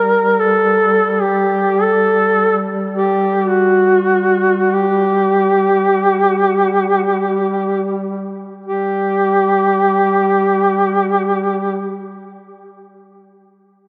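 A warm duduk carries the melody up front, its vibrato and scooped notes giving this Caucasian lament a solemn, mournful folk voice that hovers in a narrow span between F#4 and Bb4. Beneath it, a second, dark duduk holds a low drone on G3, quieter and shaped by the same vibrato and scooped inflections. Both parts play from the start through 12.0 seconds, and each has a distant, roomy character. The unmetered phrasing slows from 1.6 to 8.7 seconds, where a new section begins. A wet church reverb with a long 3.6-second decay surrounds the sound in this short cut from a longer piece.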